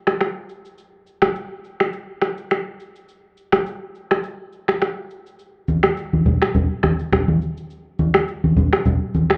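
A lightly swung 4/4 afrobeats groove opens with up-front electronic finger snaps, shaker and rim click, carrying a romantic, joyful mood through this short cut from a longer piece. At 5.7 seconds, bright, low-tuned acoustic congas with a thin-skinned, small-room character join near the front. The whole mix sounds muffled, as if heard through a wall, with a club reverb and a moderate plate reverb hanging around the parts.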